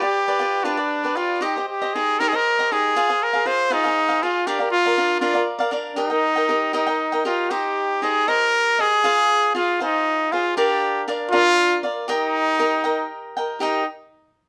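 A close-miked solo trumpet leads this short passage of mariachi-flavored Mexican folk music, singing a romantic melody in a classical style with a bright tone and a soft attack that keeps its phrases gentle. Beside it, an acoustic cavaquinho supplies picked accompaniment, crisp and sitting up front in the mix, slightly below the trumpet's level. The music moves in a lilting 6/8 with a rubato feel, giving it a festive yet tender sway. Its harmony circles through a dominant-to-minor progression that settles home, then runs again from the C minor chord through to E-flat when a second section begins at 7.5 seconds. A moderate studio reverb lends the pair a sense of space, and the passage, lifted from a longer piece, ends at 13.9 seconds.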